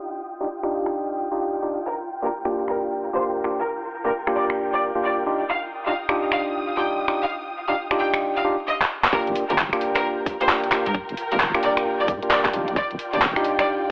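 A swung two-step garage groove of overdriven finger snaps, handclaps and hi-hat drives this bouncy, soulful excerpt, with a hollow, percussive organ stab carrying chorus and analog delay over a soft, expressive string section that pumps in the background. A clear, focused violin section takes the melody from 1.9 seconds, and after a filter sweep and a drum fill, the drop at 9.1 seconds brings in a tight, up-front electronic kick and a deep, dark wobble bass. The echo-heavy mix sits in a plate reverb with vinyl crackle and a muffled, telephone-like low-pass tone.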